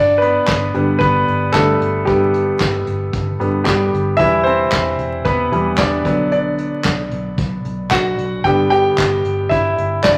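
A bright concert grand piano and a muted, picked electric bass open this piano-driven pop excerpt in G major at 113 BPM in a straight 4/4, with a brush drum kit joining at 0.2 seconds. The piano takes the solo spotlight from start to finish, sitting up front with a brilliant, polished tone, deep bass and short sustain as it moves through G, E minor at 4.2 seconds, B minor at 6.1 seconds and back to G. Beneath it, the vintage bass stays low and dark, its foam-muted, round, amped tone sitting well back in the mix. The vintage brush kit supplies handclaps, hi-hat, a boomy kick and a medium-tuned snare, with a natural, acoustic studio-room character and a rolled-off top. A large studio reverb and a layer of vinyl crackle give the whole passage a warm, anthemic, slightly aged glow.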